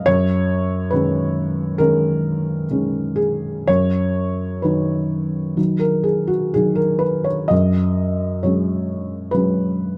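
Neoclassical minimalist piano in F# major, this brief excerpt from a longer piece has a tender, intimate mood and moves at an unhurried 59-71 BPM in 4/4 with a rubato feel. A felt-muted upright piano plays solo for the full 10 seconds, ranging from F#2 up to D#5. Its tone is soft, dark and mellow, with thick felt dulling each note to a short sustain, and it sits up front and close to the listener. The harmony rests on a C#sus2 over an F# bass before settling onto F#sus2 at 7.5 seconds. Light reverb surrounds the natural sound of the instrument, and the tuning sits slightly low at A4 = 439 Hz.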